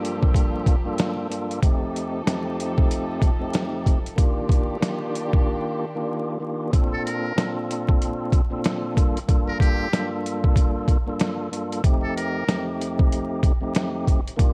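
Boom-bap hip-hop at 94 BPM with a swung sixteenth-note feel, this reflective, moody excerpt sits in a dark production with light small-room reverb and a bed of vinyl crackle. The sampler-style drum kit is up front, compressed, pitched down and gritty, with a thumpy kick, a medium-tuned snare and hi-hat carrying a tape-softened character throughout. A fat, lightly overdriven tonewheel organ with key click and a fast rotary speaker supplies the accompaniment through a cassette-tape haze, while a bowed studio string section with a reedy, gut-string, period-style tone holds sustained chords until 6.7 s. After a break at 5.5 s, a muted trumpet takes the solo melody from 6.9 s, its buzzy, thin, brilliant tone close-miked and jazz-inflected, with vibrato, scooped notes and analog delay. The harmony moves through Gm7, F7 and Ebmaj7 before settling into Bbmaj7, Gm7 and F7.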